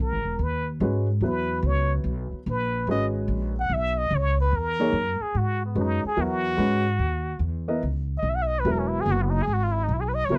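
A swung 4/4 pulse drives this hypnotic, intense modal jazz excerpt, where a brilliant plunger-muted trumpet solos with wah-wah inflections, vibrato and scooped notes over a woody, growly pizzicato upright bass, while an intimate baby grand piano with audible action noise and short sustain joins at 0.8 s, all captured in a dry, close 1970s-style studio sound.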